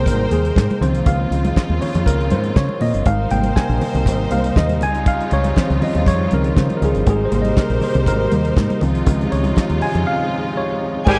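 A worn, slightly out-of-tune tine electric piano, lightly overdriven through its built-in speakers, takes the lead from the start over lush, bowed studio strings and a foam-muted fingered electric bass. Together they move between Abmaj9 and Dbmaj7 in this joyful, danceable disco excerpt. A dry, damped 70s drum kit sits up front with a fat snare, tight kick, dark cymbals, hi-hat, crash and handclaps, while very quiet, thin-skinned congas play until a break at 10.1 seconds. At 11.1 seconds a smooth-topped horn section punches in with stabs and an expressive violin section joins, all captured in a close, 1970s-style studio sound.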